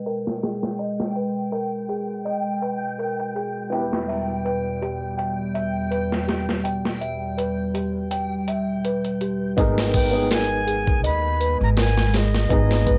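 A dark, woody upright piano, a warbling tape-like pad, a delicate bell-like celesta and a reversed, dreamy swelling texture open this melancholic, cinematic trip hop excerpt together, with a gritty, overdriven sampler-style drum kit entering at 0.1 seconds. At 82 BPM in G# harmonic minor with a light swing, the piano plays mellow, short-sustained accompaniment through tremolo and a filter sweep, while the celesta's airy arpeggios pass through tape echo and their own filter sweep. Beneath them the pad holds nostalgic, detuned chords, moving from G#madd9 to Em. The drums sit up front with a thumpy kick and a medium-tuned snare. At 9.6 seconds the texture drops away as a pizzicato upright bass with gut strings arrives prominently, and at 10.0 seconds a breathy, crisp jazz flute with vibrato takes the melody, roughened by 12-bit sampler grit. The whole excerpt has a lo-fi home-cassette sound with light reverb.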